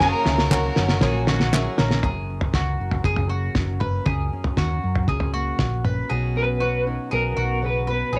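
This dry home recording on cassette has a close, lo-fi character. It is an excerpt of indie folk at 118 BPM in a straight 4/4, with a warm, anthemic mood and a building arrangement that moves from F# to Badd9. It opens with a busy burst: a muffled, cloth-damped drum kit with a fat snare and tight kick plays a fill, and crisp group handclaps join it. Above them, a twangy, slightly broken-up electric guitar from a small old amp carries the melody through tremolo and analog delay. Around it sit a clear, worn upright piano that sounds slightly detuned, a rich fiddle with light vibrato on a second line, a boxy ladder-braced acoustic guitar in the background, and a very quiet chamber string section holding dark, sul tasto chords. Throughout, a mellow mandolin picks woody arpeggios while a round, hollow-body electric bass, fingered and up front, anchors the low end. At 2.0 seconds a full-bodied fingerpicked steel-string acoustic guitar with audible finger squeak takes over the accompaniment, and the drums stop at 6.0 seconds. 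The ladder-braced acoustic returns at 6.1 seconds as the harmony shifts, and the lead electric guitar follows at 6.4 seconds.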